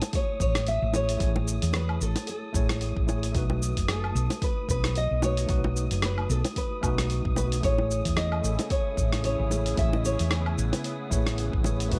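A full-bodied, fingerpicked nylon-string guitar carries the melody through this smooth sunset chillout excerpt, over a worn, slightly out-of-tune electric piano with light overdrive and digital delay, a dark, round fretless bass up front, a deep, layered electronic kick alongside a gritty, sampler-style soul kit of hi-hat, rim click, shaker and woodblock, dry low-tuned bongos and a breathy, wind-like noise texture in the background, before a lush, detuned pad with chorus and phaser joins at 8.0 seconds.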